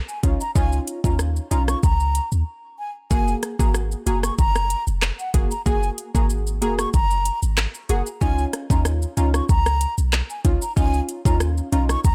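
Up-front electronic afro-pop drums with a deep kick, metallic hats, handclaps, rim click and shaker drive this summery, bouncy dancehall excerpt at 94 BPM in F# major, joined by a boomy, dark, sine-like 808-style bass, punchy, bright detuned sawtooth chord stabs with chorus and a filter sweep, and an airy wooden flute melody with vibrato and digital delay, all in a dry mix over C#add9 and F#add9 chords, with a brief break from 2.5 to 3.1 seconds.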